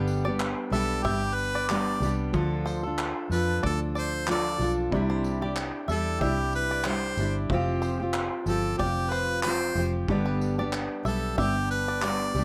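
An easy-going, sunny piece of acoustic pop moves at 93 BPM in 4/4 with a light swing on the sixteenths, cut from a longer piece. A full-bodied, fingerpicked steel-string acoustic guitar sits up front from the start, alongside twangy bluegrass banjo arpeggios played with fingerpicks and a dark, foam-muted vintage electric bass with a round, amped tone. A loose indie drum kit, distant and roomy with a punchy kick and rolled-off top, adds handclaps and tambourine. At 0.7 seconds a bright, close-miked harmonica takes the melody in a pop style with light vibrato, and at 4.9 seconds a felt-muted upright piano enters in the background, soft, mellow and intimate. The chords move through G, Dm, Cadd9 and Fsus2 before returning to G, all in a moderate studio reverb.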